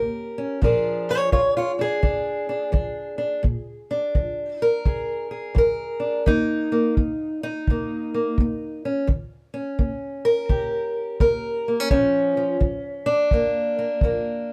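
A fingerpicked steel-string parlour guitar opens this rollicking, laid-back acoustic country blues at 0.0 seconds, sitting up front with bright, fresh strings, a boxy body and an audible finger squeak. A tight, natural kick drum played with brushes joins at 0.6 seconds, in a small-room sound that stays close to the guitar's level. The tempo is an easy 85 BPM in 4/4 with a swung eighth-note feel, in Bb mixolydian, tuned slightly flat of standard at A4 = 439 Hz. The guitar carries the melody over a range from F2 to Db5 as the harmony moves from a rootless Eb7 to Bb7, back to Eb7 at 6.3 seconds, and settles on Bb. The whole is heard from further back in a wet booth with a short ambience, and this cut from a longer piece ends at 14.5 seconds.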